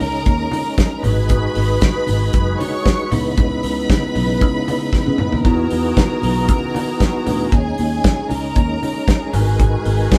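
Recorded as a band playing live in a moderate stone room, this driving, danceable disco excerpt rides on a dry, up-front 70s drum kit with a fat snare and tight kick, a round, dark fingered electric bass, a lightly overdriven tonewheel organ holding sustained chords through chorus vibrato and a slow rotary speaker, a lush bowed string section carrying a second line, and very quiet low-tuned congas that enter at 0.5 s, with a drum fill at 4.9 s as the chords move from D#7sus4 through G#m7, C#m7 and Emaj7.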